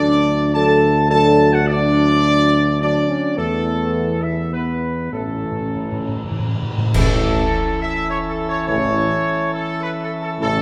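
Classical ceremonial fanfare in A major at 104 BPM in 3/4, triumphant and regal, cut from a longer piece, where a warm, punchy trumpet section carries the melody up front with light vibrato over mellow French horn chords, dark trombone chords and a soft-attack tuba bass, bright cymbals and concert bass drum join at 3.4 seconds, round calf-head timpani add a fill from 5.1 seconds, and a full principal-chorus pipe organ enters at 7.0 seconds on a band accent, all set in a roomy scoring-stage reverb as the chords move from D through Esus4 to A.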